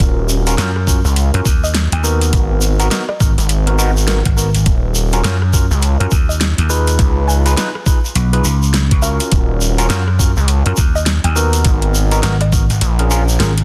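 A funky, swaggering glitch hop excerpt with a swung feel opens with a knocking electronic kick, a dubstep kit of huge snare, rim click and metallic hats, a grainy tube shaker, an aggressive saturated synth bass and barky overdriven electric piano stabs pumping through phaser and tape echo, while a woody, nasal wave-folded pluck carries the melody in the background with chorus and echo, a punchy slap bass joins up front at 0.6 seconds, and the kick drops out at 13.4 seconds in this dry, dense, heavily limited mix.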